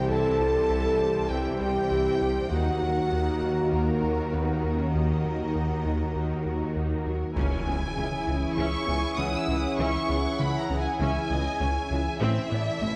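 Soaked in scoring-stage reverb and worn, warbling cassette tape, this tense, brooding excerpt of a hybrid orchestral and electronic film score moves at 99 BPM in C# dorian, where a dark, expressive violin section carries the melody with vibrato and portamento over a smooth second violin line, background violas, a lush detuned sawtooth pad with chorus, mellow French horns, rich cellos, very quiet woody double basses, a solo tuba and a round, deep analog bass riff, while an electronic impact strikes at 7.4 seconds.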